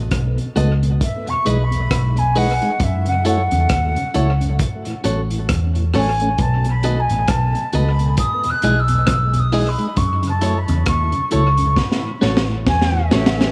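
Roots reggae with an uplifting, sunny mood, heard in a short cut from a longer piece in an echo-heavy mix with light reverb and a small room ambience. A vintage muted fingered electric bass sits up front from the start, its foam-muted tone dark, round and punchy, while a crunchy breakbeat drum kit of hi-hat, kick drum, rim click and high-tuned snare arrives almost at once, saturated and gritty with a rolled-off top and a tight kick, its hits trailing dub echo. A mellow tonewheel organ with key click, vibrato and a slow rotary speaker joins at 0.4 seconds, and a clean, bright, compressed picked electric guitar follows at 0.6 seconds, both carrying dub echo as the chords move through B7, Emaj7, F#m7 and A6 with a swung sixteenth-note lilt. An airy silver concert flute takes the melody from 1.0 seconds, its straight tone and crisp chiff on the attack sounding distant yet up front and slightly unsteady, echoed in dub style. 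A drum fill from 11.8 seconds closes the passage.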